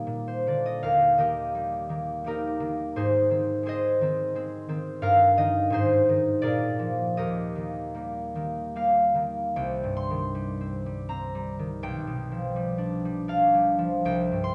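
This classical solo harp piece is serene and peaceful, moving in an unhurried, rubato 3/4 at roughly 71-90 BPM. The concert harp is the only part, mellow and ringing as it is fingerpicked up front across a span from B1 to C6, in a moderate recital-hall reverb. It settles in E-flat major before shifting to C minor at 9.6 seconds, and this short cut from a longer piece ends at 14.5 seconds.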